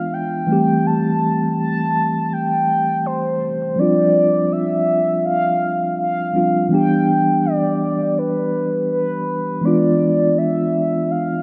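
A rough home-demo sound sits inside a lush hall reverb with a 2.8-second tail, giving this short R&B fragment a moody, longing air. At a relaxed 82 BPM in 4/4, with a light swing on the sixteenths and a D dorian colour, the harmony moves through Am7, Dm11 and Em7 before settling on a tense E7b9 at 9.6 seconds. A mellow tine electric piano carries the accompaniment up front from start to finish, its clean tone heard as if through built-in speakers. Above it, a horn-like synth lead sings the melody from B4 to A5, blending sawtooth and triangle waves into a round, warm voice with a soft attack and sustained notes. Vibrato, a filter sweep, chorus and delay lend the lead extra shimmer as both parts play together across the whole passage.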